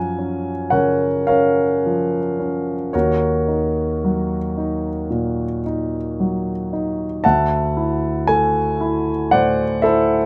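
Flowing in a free, rubato 4/4 at roughly 53-59 BPM, this dreamy, serene impressionist piece for solo concert grand piano drifts through F#maj7, D#m7 at 2.9 seconds and D9 at 7.2 seconds, spanning D2 to A#5. The piano sounds intimate and polished, with deep bass, long sustain and the mechanical noise of its action audible through close, detailed microphones. Light reverb frames the up-front instrument in this brief 10.3-second fragment cut from a longer work.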